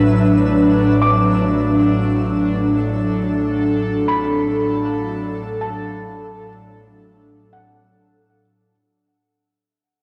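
Ambient excerpt at 78 BPM in 4/4, melancholic and serene, built on a single Bm7/A chord: an airy, breathy pad with chorus sits up front holding sustained chords, while a felt-muted upright piano plays soft, intimate arpeggios high above through analog delay. Deep in the background, a round sine sub bass holds A1 and a twinkling granular texture adds sparkling, octave-up shimmer, and both fade out across the whole 8.7 seconds. The home cassette recording carries a wet spring reverb, and the entire excerpt fades out from 0.5 s.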